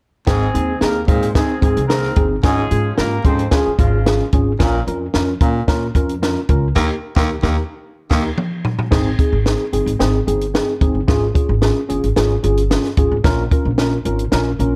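A straight 4/4 groove at 111 BPM drives this joyful, danceable cut of uptempo 1960s-style soul in Ab major, where a compact cocktail drum kit with a high-tuned snare and dark cymbals and a woody pizzicato upright bass sit up front beneath a worn, slightly out-of-tune tine electric piano with analog chorus, while a raspy, growling baritone saxophone riff and a vintage horn section with octave doubling open the passage, the horns dropping out at 4.3 seconds before a band accent and drum fill close the first section at 8.9 seconds.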